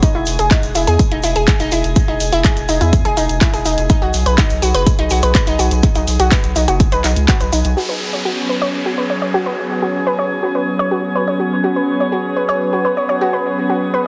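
Progressive house at 124 BPM in a straight 4/4, this uplifting, hopeful excerpt is cut from a longer piece and moves from Emaj7 to B before settling on F#sus4 at 7.8 seconds. An analog pluck with a detuned, noise-flecked sawtooth-and-square edge plays arpeggios up front throughout, colored by chorus, dub echo and sidechain pumping, with a filter sweep across its second half. Beneath it, a round, deep analog bass and a punchy, tape-warm electronic kick drive the opening, joined by a layered house kit of crash, handclaps and low-passed hi-hats, plus a grainy egg shaker sitting in the background; these drop away before the 8-second mark. A glassy texture of drifting overtones hovers calmly the whole way, softened by chorus and its own reverb. At 8.0 seconds a lush, thick unison pad arrives with a slow attack, bright and phased, carrying sustained chords under its own filter sweep while a downlifter descends until 11.6 seconds. 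The mix has light reverb and a heavily compressed, radio-like sheen from multiband compression.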